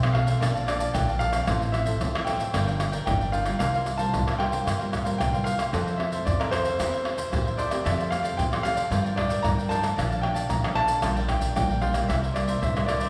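A joyful, playful samba and choro excerpt in which an intimate concert grand piano with audible action noise and long sustain carries the melody from 0.1 seconds over crisp picked cavaquinho, a fingerpicked classical nylon-string guitar in the background, a woody, thumpy pizzicato upright bass, and up-front, band-limited vintage percussion of maracas, pandeiro, tamborim and a tight surdo, all set in the wet reverb of a recital hall.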